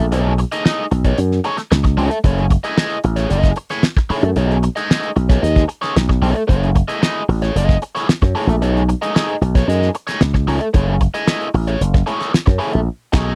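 In a dry, close 1970s-style studio sound, this driving, cool funk excerpt sets a growly, punchy slap bass with an envelope filter and a damped 70s drum kit with a fat snare and tight kick alongside a picked, compressed overdriven electric guitar with wah, all three up front as they alternate between B13 and F#m9 chords before a band accent at 12.9 seconds.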